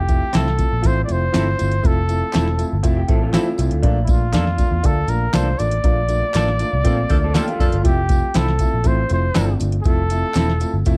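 A soft vintage rhythm box drives this uptempo 1960s-style soul groove at 120 BPM in a straight 4/4, its deep kick, tonal snare and metallic hi-hats overdriven, with close, dry tambourine and group handclaps sitting in the background. A foam-muted, picked electric bass sits up front with a round, punchy tone, while a grand piano fills out the harmony in F major with an intimate feel and audible action noise, adding a fill at 2.8 seconds. Over this, a breathy solo trumpet carries the melody with a soft attack, gentle vibrato and a whispered, jazz-style voice. A hollow-body electric guitar plays clean, compressed stabs through a harmonic tremolo, and a second guitar through a small old amp adds a slightly broken-up, lo-fi riff with spring reverb on two brief occasions. A clear saxophone section joins at 6.9 seconds for a short second line during a band accent, as the chords move from Fmaj7 to Bbmaj7 and back in this uplifting, danceable excerpt with a dark, warm production and moderate club reverb.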